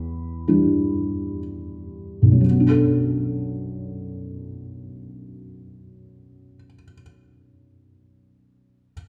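Wistful and melancholic, this short passage cut from a longer lyrical classical solo piano piece in B minor drifts in a rubato 4/4 at 58-69 BPM on a felt-muted upright piano, its dark, intimate tone up front with audible action noise and short sustain across a range from B1 to B5, easing from Em7 while slowing through the opening 2.4 seconds before settling onto Bm7, all bathed in the 1.5-second reverb of a recital hall.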